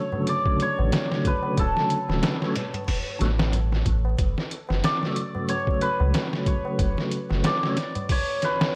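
A swung 92 BPM trip hop groove in 4/4 comes from a compressed, pitched-down sampler-style drum kit with a thumpy kick up front, while a low-tuned tabla sits in the background and a round, deep dub sub bass enters at 0.8 s. A mellow percussive tonewheel organ, lightly overdriven and spun through a fast rotary speaker with chorus vibrato and tremolo, supplies the accompaniment in F# minor as the harmony moves from Dmaj7 to F#m at 4.2 s. A shimmering hammered cimbalom carries the melody through tape echo and 12-bit sampler grit, giving this dry, crackling, hardware-recorded fragment of a longer piece its dark, cinematic mood.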